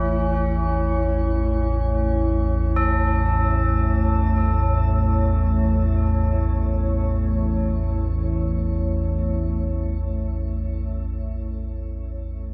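In free time, this dark ambient drone in A major unfolds as a cavernous, dark fragment cut from a longer piece, sitting on a held A chord for its full 12.5 seconds. Up front, a deep rumbling drone in the low register blends triangle and sawtooth tones, detuned and ominous, with slow attacks, long releases, built-in reverb and subtle chorus. Above it, a deep dark ambient pad sustains moody chords built from detuned unison sawtooth and sine layers with a sub octave and a moving notch, colored by chorus, built-in reverb and shimmer reverb as it fades out across the whole span. Soft tubular bells, struck with a padded hammer, play mellow, solemn arpeggios that ring through diffuse ambient delay and shimmer reverb. A very quiet quartz singing bowl adds a pure, smooth, meditative texture with slow beating, struck with a suede striker. The dreamy mix is soaked in a huge ambient reverb with a 9.1-second decay.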